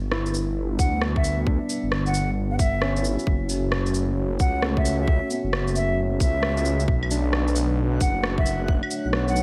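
A reedy, airy concert flute carries the ghostly, wistful melody of this future garage excerpt at 133 BPM in B minor, entering at 0.8 s with digital delay over a 16th-note swing. Beneath it sit a menacing detuned saw bass with tube saturation, a tight, up-front electronic kick, a dark, chorused analog pad and a felt-muted upright piano with audible action noise, 12-bit sampler grit and delay. The bass, pad and piano share sidechain pumping, and electronic rim click, shaker and claves re-recorded in a large room add percussion. The chords move from G through F#m to Bm7, and a reversed, granular swelling texture appears at 7.5 s, after the arrival of Bm7. The whole mix sits in a lush hall reverb with bright 1980s-style digital production.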